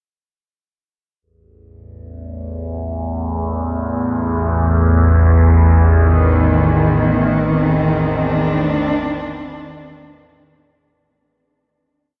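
Drenched in a huge, cavernous reverb with a dark production, this short, complete dark ambient drone piece unfolds in free time. A resonant, up-front synth drone of sawtooth and sine tones enters at 2.3 seconds with a slow attack and long release, its overtones sweeping and moving under chorus and phaser. At 6.0 seconds a rich chamber cello section joins with smooth, bowed sustained chords that shift slowly, their even vibrato sitting up front as the piece fades out.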